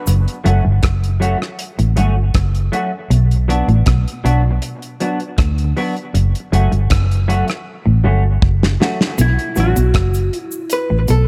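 A straight 4/4 dub reggae groove at 79 BPM in B minor sets a deep, hypnotic mood: a dry, damped 70s drum kit with tight kick, medium-tuned snare, rim click and hi-hat sits up front beside a dark, round, foam-muted fingered bass, while a clean, compressed semi-hollow guitar plays a low riff and a second, very quiet semi-hollow guitar adds accompaniment bathed in lush chorus and dub echo over F#m and Bm; a drum fill arrives at 7.7 seconds, and from 9.2 seconds a close, dry cabasa returns and a dark, picked hollow-body jazz guitar carries an up-front melody with dub echo over a B5 chord, within a small, lightly reverberant room.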